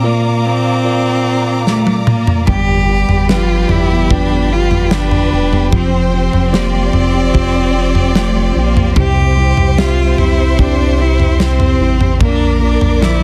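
A close, bowed solo cello sings the melody with smooth vibrato over bell-like tine electric piano and a dark, lush bowed string section to open this heartfelt, hopeful 74 BPM pop ballad. A polished acoustic drum kit with a punchy kick enters on a fill at 1.7 seconds, and at 2.5 seconds an expressive violin section adds a second line alongside a full-bodied fingerpicked jumbo acoustic guitar in the background and a thick, saturated sub bass up front. The chords move from Bb through G7, Fsus2 and C in a dense, heavily limited modern master.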